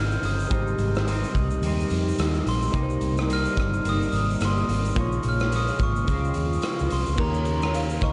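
Opening on a sparkling glockenspiel melody over twangy twelve-string electric guitar, detuned analog keys with a filter sweep, a distant mellow French horn section, and a round foam-muted electric bass, this nostalgic, sunny bedroom-pop excerpt in Db lydian at 108 BPM with a gentle sixteenth-note swing adds a gritty, punchy garage drum kit at 0.1 s and a woody kalimba second line at 7.2 s, all blurred by cathedral reverb and a dreamy cassette haze with a rolled-off top.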